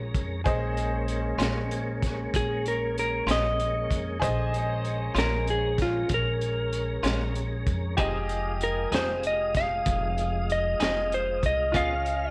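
Slow blues in 12/8 at 64 BPM, this soulful, smoky fragment from a longer piece moves from Bbm7 to Fm7 before touching Db7 near its close. An electric slide guitar carries the melody from 2.4 seconds, slightly broken-up and compressed, sitting up front in the mix. Beneath it, a worn, slightly detuned upright piano adds brilliant accompaniment with audible action noise. A tonewheel organ holds sustained chords through chorus vibrato and a slow rotary speaker, with a hint of key click. A pizzicato upright bass sounds growly and thumpy, and a saturated breakbeat drum kit with a high-tuned snare, tight kick and hi-hat has a gritty, rolled-off top. A clean, picked electric guitar with tremolo joins at 1.4 seconds, and light studio reverb surrounds the band.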